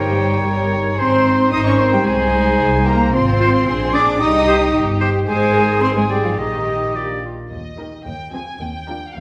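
Spirited and lively, this quick classical-period orchestral movement in 2/4 at 111 BPM moves from Ab major to Eb major at 3.1 s, with veiled, con sordino violins carrying the melody while a second muted violin section, a bright, airy silver flute, a clear oboe with light vibrato and a distant clarinet weave second lines as lush muted violas accompany. A dark French horn section holds sustained chords, and the muted cellos and double basses anchor the bass with a dark, veiled tone. The woodwinds and horns drop out around 7 s, leaving the strings to close the cut at 9.2 s in the roomy reverb of a recital hall.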